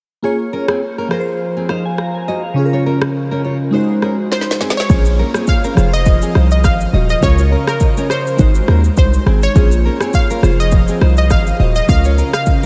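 Afrobeats in B-flat minor at 103 BPM, this smooth, sultry excerpt rides a gentle 16th-note swing over a looping Bbm7, Fm, Db6, Ab7 progression. Glassy digital keys sit up front with chorus and a filter sweep, their fast-attack tones decaying quickly, while a fingerpicked nylon-string guitar adds a full-bodied classical riff touched with delay. The afro-pop drum kit comes in at 0.7 seconds with a deep kick, woody snare, rim click and shaker, its produced electronic sound carrying a tape-warm tint. As a drum fill begins at 4.3 seconds, an analog pluck takes the melody, round and bright with detuned sawtooth character, chorus and delay. A punchy, heavy 808-style bass lands at 4.9 seconds, sine-based with a noise layer and placed up front, grounding the second section under light reverb.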